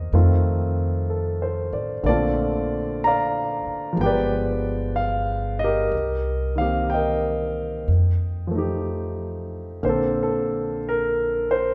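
Jazz ballad, late-night and romantic, in Bb major at a slow 62 BPM with a swung 4/4 feel, cut from a longer piece. A concert grand piano, natural and up front with a deep low end, plays the accompaniment through F7, Bbmaj9, G7b9, Cm7 and F9 before reaching Bbadd9 at 9.8 seconds, while a woody pizzicato upright bass on steel strings plays beneath it for the full 11.7 seconds. A church or concert hall gives the sound a wet reverb with a 1.8-second decay, and the tuning sits at A4 = 439 Hz.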